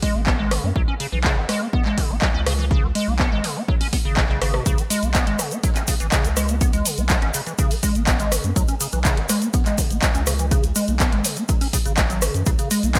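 Acid house at 123 BPM in C# minor pentatonic, this gritty, trippy cut from a longer piece rides a single C#7(no3) chord as a squelchy, resonant square-wave acid riff with overdrive, subtle chorus, tape echo and a filter sweep ranges from B2 to C#4. An up-front, tape-kissed kick and a punchy analog drum machine with handclaps, hi-hat and rim click, re-recorded in a large room, drive the groove, while a deep, thick triangle sub bass from G#1 to F#2 pumps under sidechain. At 4.7 seconds a grainy, bright acoustic tube shaker enters close yet in the background, all set in a digital ambience.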